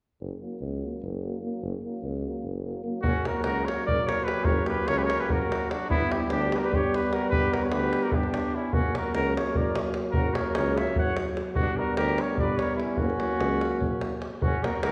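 Awash in a wet, church-like hall reverb, this fiery yet bittersweet Balkan brass band excerpt in 7/8 opens with a punchy tuba bass and a pair of euphoniums, one mellow with soft-attack vibrato in the background and the other warm, before a vintage-toned trumpet takes the up-front melody at 3.0 s alongside a tight, band-limited davul, with a clear flugelhorn adding a lightly vibrato second line from 3.1 s.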